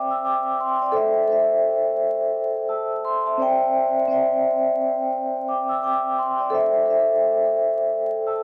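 Gritty and reflective, this short hip hop excerpt at 86 BPM in A minor sways with a swung sixteenth feel as a solo vibraphone, struck with soft mallets, rings out up front with a mellow, airy, metallic tone and fast motor vibrato. Filtered and run through cassette tape and tape echo, the vibraphone moves between Cadd9 and Am across 8.4 seconds, ranging from C4 to E6. A small, wet booth ambience and the character of a home cassette recording with vinyl crackle give the clip a lo-fi, worn feel.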